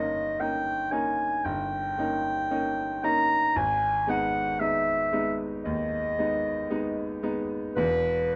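Classical romantic duo music, melancholic and elegiac, with a dark, roomy clarinet singing the melody up front over a clear, vintage-toned grand piano accompaniment of short sustain, moving in rubato 4/4 from D#7/G to G#m and on to E5 in a brief fragment cut from a longer piece, captured with close, detailed microphones and light reverb.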